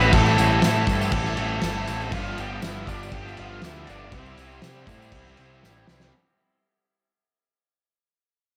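Rock in a shoegaze and dream pop vein, this wistful, blissful fragment moves at 120 BPM in a straight 4/4 through Am7, G7 and C in C major, where a dark octave-fuzz lead guitar with distortion and digital delay carries the melody over a muffled, saturated indie drum kit with a fat snare and a tight kick, an up-front growling bass with overdrive, a biting overdriven guitar riff with analog chorus in the background, very quiet raw garage and double-tracked sludgy distorted guitar riffs, a faint bright clean electric guitar playing arpeggios and a jingly, close tambourine, all under light studio reverb as the whole passage fades out and the drums play a fill at 5.6 seconds.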